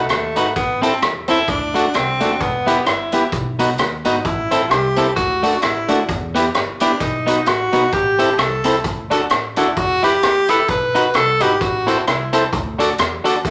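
A swung ska groove at 130 BPM in E minor drives this energetic passage cut from a longer piece. A bright, close-miked tenor saxophone takes an up-front solo with vibrato over a cycling B, Am, D, Em progression, backed by slightly broken-up picked electric guitar, reedy organ stabs with key click and light overdrive through a stopped rotary speaker, and woody, thumpy pizzicato upright bass on gut strings. A gritty, saturated garage drum kit with a punchy kick, hi-hat and rim click sits up front with a rolled-off top, all set in a moderate large-studio reverb.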